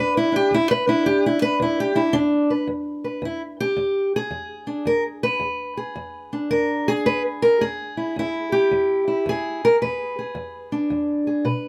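A swung 4/4 groove at 110 BPM, with the eighth notes pushed to a 66% lilt, drives this short excerpt of acoustic country blues in E mixolydian, tuned slightly low to A4 = 439 Hz. A lone fingerpicked steel-string parlour guitar carries the whole 11.7 seconds, ranging from E2 up to B4 with a dark, boxy tone that sits up front in the mix. The mood is laid-back yet gritty, the kind of porch-side playing that feels unhurried but rough around the edges. The opening stretch rests on an E5 chord until 2.7 seconds, when the harmony moves to E7 and the second section begins. Close, detailed microphones catch the instrument's body, and a touch of light reverb adds a little air around it.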